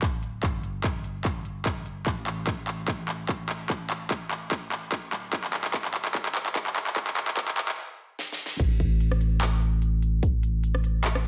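Future bass at 147 BPM in a half-time, lightly swung feel, dreamy and emotional, cut from a longer piece. It opens with a build-up under a filter sweep, where a big-room dance drum kit with a huge snare, crisp hats, handclaps, rim clicks and crash cymbal rolls through fills over a punchy electronic kick and a deep, mellow sine-toned 808-style bass that pumps against the sidechain. After a brief stop at 7.8 seconds, it all lands in the drop at 8.6 seconds, where the tape-warm, up-front drums and long sustained bass sit in light reverb, with the kick dropping out at 10.3 seconds.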